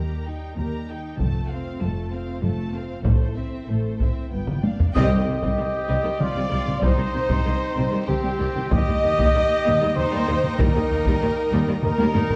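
A shadowy, reverberant scoring-stage sound frames this dramatic, epic orchestral film-score passage in 3/4, where a lush violin section carries the melody over a second violin line, expressive violas, cellos and woody double basses, while dark French horns hold sustained chords and hard-stick taiko drums enter at 1.2 s; a hollow, airy flute line slips in just before a band accent at 5.0 s that brings in focused studio strings, clear trumpet stabs and a round timpani stroke.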